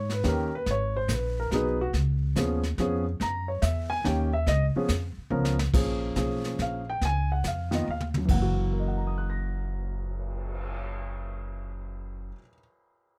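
Jazz piano trio in a sophisticated 3/4 swing at 142 BPM, cut from a longer piece and centred on F# mixolydian, with a grand piano carrying the melody in an intimate, natural tone where the action noise is audible. A woody, pizzicato upright bass with steel strings sits up front beside it, while a brushed kit with dark cymbals, a medium-tuned snare and a boomy kick adds fills at 5.3 and 7.9 seconds before dropping out at 10.8 seconds. The close, detailed miking and dry sound with little reverb give the trio a warm, present feel as the chords move through D#7, G#m7 and C#7 and land on F#7.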